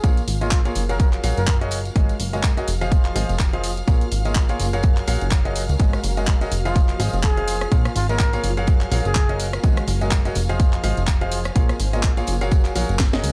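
Set in a small room ambience, this energetic, bittersweet piano house excerpt at 125 BPM with a swung sixteenth feel is driven by a punchy, tape-warm electronic kick up front, a layered house kit with cracking snare, handclaps, hi-hat and rim click, a background tambourine, and a plucky, funky analog bass that pumps with the sidechain. A clear, polished grand piano with audible action noise plays a pumping, delayed riff over alternating Gbmaj9 and Fm7 chords, while a very quiet bowed string section holds focused chords with vibrato and a cloudy, evolving granular pad adds a mellow, blurred haze. A dark, breathy jazz trumpet with delay sings brief solo phrases, entering again at 6.7 seconds, and a drum fill arrives at 13.0 seconds.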